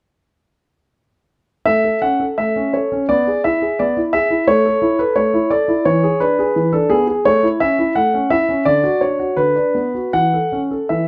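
Rubato phrasing in a gentle four-beat metre carries this graceful, cheerful classical-period piano sonatina passage, cut from a longer piece, where a solo concert grand plays from 1.7 to 11.1 seconds with deep bass, an open tone and long sustain, sitting up front under close, detailed microphones and light reverb as the harmony moves from home-chord comfort through brief dominant tension and back.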